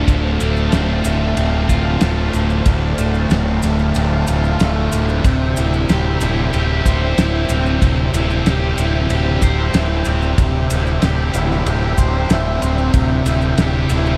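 Thick, double-tracked fuzz guitar sits up front with a bright, distorted riff spanning from D2 to C5, colored by a phaser. This is a dark, mysterious psychedelic rock excerpt at 93 BPM in a straight 4/4, cut from a longer piece and moving from Dm7 to Cadd9/D at 5.2 seconds. Beside the guitar, a punchy fingered electric bass with overdriven fuzz holds a low D1. In the background, a damped 70s drum kit plays kick, ride and snare with a fat snare, tight kick and rolled-off top, while grainy, mellow maracas add a small-room texture. A tonewheel organ, lightly overdriven with key click, chorus vibrato and a slow rotary speaker, sustains chords between C5 and A5 behind the band, and a light reverb gives the whole a modest sense of space.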